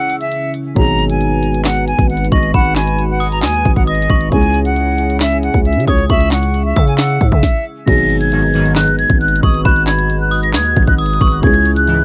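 Melancholic and dark, this half-time trap excerpt at 135 BPM in G# minor sets an airy, vibrato-laced concert flute with tape echo up front over a ringing, inharmonic FM bell line, a boxy, mellow grand piano in the background and a detuned analog pad, while a trap kit with a hard-clipped kick, sharp snare and crisp hats arrives at 0.1 seconds, a growling, buzzy 808-style bass joins at 0.8 seconds, and juicy, resonant polysynth stabs cut in at 8.3 seconds, all in a dry mix.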